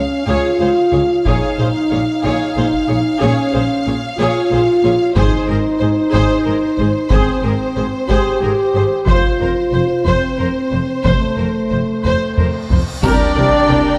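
A mellow French horn section sits up front in this dramatic, epic orchestral film cue, holding smooth sustained chords in 6/8 at a slow 61 BPM. Beneath it, lush bowed strings carry the harmony through Db, Bbm7, Ab and F. A violin section sings the melody with vibrato while a second violin line and an expressive viola section with portamento fill the middle, and a rich, distant double bass section and a warm cello section in the background supply the bass. Heavy-sticked taiko drums enter at 1.3 s and drive the passage in a live room, building to a drum fill as a huge, bright cymbal swell and sub drop rise from 12.4 s. At 13.0 s the music lands on a Gm/C impact, where a solo trumpet adds classical-style stabs, an airy, close-miked concert flute and a clear string section join in the background, and a distant, roomy tuba anchors the low end. A moderate scoring-stage reverb gives the cut a grand, spacious finish.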